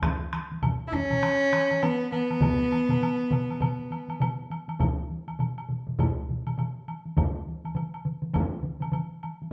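Swung sixteenths drive a 4/4 pulse at 101 BPM in this ceremonial Japanese taiko ensemble piece, built from heavy-stick taiko drums, a hard-struck taiko part, a distant, up-front taiko ensemble and a woody woodblock, with one close, dry taiko part sitting in the background and entering at 2.4 s. A single bowed cello carries the melody between 0.9 and 4.2 s, sounding rich, nasal and earthy with light vibrato, distant yet up front. Cut from a longer piece, it plays live in one room and has a stone-room reverb that lends a driving, ritual weight as the music moves into a new section at 4.8 s.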